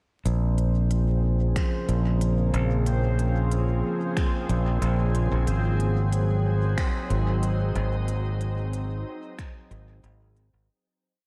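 Ambient dub at 92 BPM in Bb minor, deep and meditative, where a bright, up-front fingered electric bass carries a dub-style line beneath a calm, detuned organ-like pad with ensemble chorus holding slowly shifting chords from Bbm7 to Ab7 at 5.5 seconds, while a bubbling, resonant stepped-filter texture sustains a high note, a sparse, tape-warm electronic kit of crisp closed hats and finger snaps echoes with dub delay, an overdriven electronic kick thuds softly from 1.6 seconds, and vinyl crackle sits under a light digital ambience as the whole piece fades out from 7.2 seconds.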